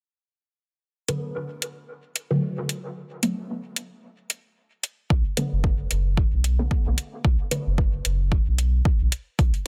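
Swung, metallic hi-hats with overdrive open this deep, hypnotic dub techno excerpt at 1.1 seconds, alongside a muted, detuned sawtooth chord stab on Bm7 that evolves through a filter sweep, phaser, sidechain pumping and dub echo, before an overdriven kick and a round, soft sub bass with tube saturation and sidechain pumping arrive together at 5.1 seconds, all set in light reverb with a dense, heavily limited master.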